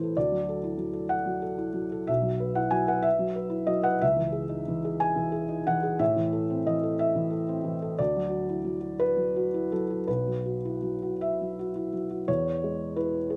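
In a rubato 6/8 lilt at roughly 52-63 BPM by the dotted quarter, this short cut from a longer neoclassical minimalist piano piece unfolds with a wistful, melancholic mood. A solo felt-muted upright piano, mellow and intimate with a thick felt tone, sits up front in light reverb, spanning B1 to G#5 as it moves through Dadd9, Bsus4, C#madd9 and Am before returning to Dadd9 and Bsus4. At 12.3 seconds a brief new section arrives on an E chord.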